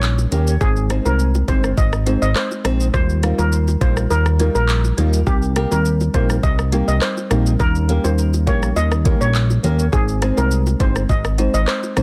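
This hypnotic, sultry dancehall cut, taken from a longer piece, opens with a fat, detuned analog bass sitting up front alongside an electronic afro-pop drum kit built on a knocking kick, smooth hi-hats, handclaps, rim clicks and shaker. It moves at 103 BPM in a straight 4/4. Low-tuned bongos, round and close, enter almost at once, very quiet under the groove. They are soon joined by a thumb-plucked flamenco guitar playing arpeggios with audible finger squeak and tape echo. A shimmering steel pan carries the melody, also touched with tape echo, while a woody, rustic folk marimba struck with medium mallets pumps against the sidechain as accompaniment. The kick drops out between 4.1 and 5.3 seconds over chords that circle through Eb7, Ab, Ebadd9 and Cm7. A small room ambience surrounds it all, and the master is dense and heavily limited.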